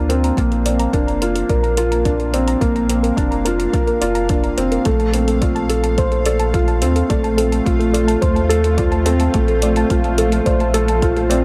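A felt-muted upright piano, soft and intimate with audible action noise, carries a mellow riff through low-pass filtering and digital delay in this luminous, tender piano and strings electronica excerpt at 107 BPM in Bb major, moving from Bbadd9 to F/Bb at 4.9 seconds over a round sub bass, a blurred granular cloud pad fading in, a dark chorused pluck playing arpeggios in the background, and tape-warm electronic kick and hi-hat re-recorded in a small room, all set in light digital ambience.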